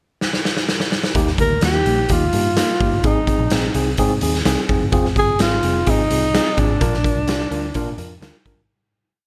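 A breathy, whispered tenor saxophone carries this short, danceable 1960s-style soul piece, with vibrato, scooped notes and a dark, intimate jazz tone on its motif-based call phrases. A raw, gritty garage drum kit opens with a fill before the verse at 1.2 seconds, setting a punchy, up-front backbeat in a pumping stone room. A round, foam-muted electric bass plays a syncopated melodic line beneath a mellow tine electric piano's close-voiced eighth-note chords, before the whole piece fades out from 6.8 seconds.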